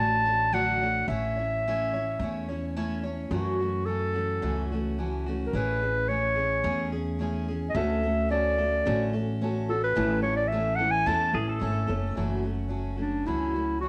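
Over a straight 4/4 pulse, this gentle, pastoral acoustic folk excerpt puts a clear, punchy classical-style clarinet up front, soloing from 3.3 s, above bright picked steel-string guitar with audible finger squeak and woody pizzicato upright bass, while a mellow, slightly detuned upright piano adds background arpeggios from 7.8 s and a twangy pedal steel guitar slides in briefly at 11.3 s, within a moderate echo-chamber reverb.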